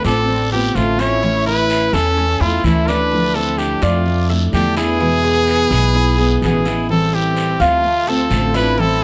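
A brilliant solo trumpet carries the melody up front, its scooped notes and vibrato giving a pop-style sheen to this sultry, nostalgic Cuban son and guajira excerpt. Beneath it, a woody, thumpy upright bass plucks gut strings, a dark, full-bodied fingerpicked steel-string guitar adds accompaniment with audible finger squeak, and a metallic-toned Cuban tres picks arpeggios in the background. A rich, earthy chamber violin section bows a distant second line, a raspy guiro scrapes along, and light reverb surrounds the ensemble, with the passage moving into a new section at 6.9 seconds.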